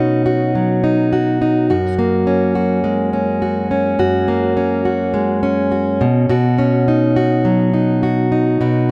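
A fingerpicked, plugged-in steel-string acoustic guitar opens this short pop excerpt alone, and it carries the whole 8.9 seconds by itself. The mood is carefree and heartfelt, set at 104 BPM in 4/4 with a straight feel in F# major. The jumbo-bodied guitar sounds warm, full and up front, spanning F#2 to F#4, with a touch of tape echo trailing its notes. The harmony moves from Badd9 to F#add9 at 1.7 seconds, then returns to Badd9 at 6.0 seconds. A light reverb surrounds the guitar, lending its up-front sound a little air.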